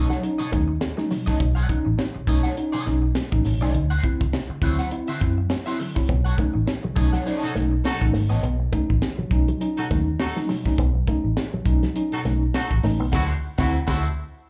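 Strutting and playful, this funk excerpt moves at 102 BPM in B mixolydian with a light 16th-note swing, heard as a live club gig through the venue's PA. A tight drum kit with bright cymbals and a high-tuned snare sits up front beside a dark, round, foam-muted bass, while a tremolo-laden tine electric piano plays stabs through a combo amp and two guitars fill out the texture: a twangy, slightly broken-up one with wah and warbly pitch drift, and a bright, clean one with an envelope filter carrying the riff. A distant, roomy horn section joins at 7.4 seconds with a second line, and the whole band hits an accent at 13.1 seconds on a D9 chord.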